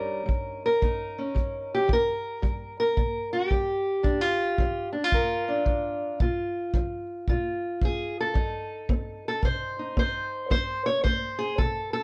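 A fingerpicked steel-string parlour guitar sits up front with a dark, boxy tone, carrying the melody in this swaggering, laid-back acoustic country blues at 112 BPM with a swung 4/4 feel. A punchy, natural-sounding acoustic kick drum with a brushes character joins at 0.3 seconds, as the harmony moves from Eb7 to Bb and then F7 under light reverb. This short passage is cut from a longer piece.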